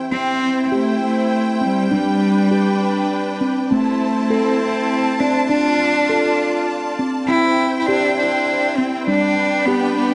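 Meditative world music with tuned percussion, this calm, gentle passage from a longer piece moves at 67 BPM in a flowing 6/8 in C major, cycling through C, G, Am and Dm. A round, ringing steel tongue drum played with soft rubber mallets spins delayed arpeggios under a lush, focused string section holding sustained chords with vibrato. Up front, a single bowed cello carries the smooth, rich melody with vibrato, all set in a wet echo-chamber reverb with a soft top end.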